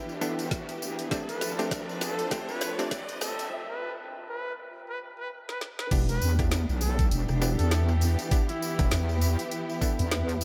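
This playful, gritty glitch hop excerpt opens on soft-attack bowed strings, a cloudy granular pad and a riser in the background. These are soon joined by a heavy, saturated wobble bass, jingly tambourine, a stringy muted clav with 12-bit sampler grit and delay, an overdriven drum kit with a woody snare and bright hats, and a knocking electronic kick up front. A trumpet with light vibrato carries a classical-style solo line through a filtered build-up, with drum fills and a break at 3.5 seconds before the drop lands at 5.9 seconds, while the swung groove and the pumping strings, pad and clav sit in a dreamy cathedral reverb.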